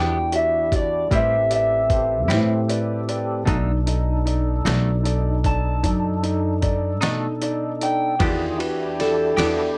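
A straight 12/8 slow blues at 51 BPM sets a brooding, soulful mood in E minor, with a gritty, compressed sampler-style drum kit (thumpy kick, medium-tuned snare, hi-hat and ride) entering at 0.3 s over a woody, up-front pizzicato upright bass. A dark, slightly broken-up guitar through a small old amp carries the lo-fi melody, while a scooped semi-hollow guitar with tremolo, an intimate concert grand with audible action noise, and a fat, lightly overdriven tonewheel organ with key click, chorus vibrato and slow rotary speaker fill in the Em7, Am7 and B7#9 changes. At 8.2 s a clean electric guitar solo arrives as a close-miked jazz horn section with light vibrato and octave doubling slips in at the back, all captured as a cassette home recording with light reverb and cut from a longer piece.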